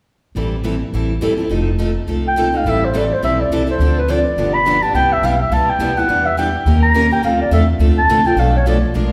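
A wet recital-hall reverb with a 1.4-second tail surrounds this short cut from a longer acoustic string swing piece in A minor, played at 210 BPM in 4/4 with a swung eighth-note feel and a bittersweet, virtuosic mood. An upright bass sits up front from 0.3 seconds, its pizzicato gut strings woody, dark and thumpy. Two picked steel-string parlour guitars carry the accompaniment from 0.4 seconds, one bright and boxy, the other warm with fresh strings and set in the background. A breathy clarinet takes the melody at 2.3 seconds, a dark, whispered subtone with vibrato, soft attacks and scooped notes that sounds both intimate and roomy in its jazz-style solo. The harmony moves from Am7 and F7 into a longer passage through Dm7, G7, Cmaj9 and Em7, touching a D#7 before settling on Dm7 and a closing Bm7b5.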